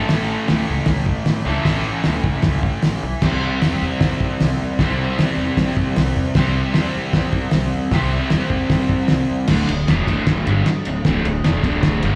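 An up-front, overdriven, double-tracked electric guitar with slapback echo drives a raw, swaggering garage rock riff over a woody pizzicato upright bass and a muffled, cloth-damped drum kit with a fat snare, tight kick and dark cymbals, captured at a live gig through the venue's PA with club reverb, and moving from A and C to a new section on D5 at 9.5 seconds in this short cut from a longer piece.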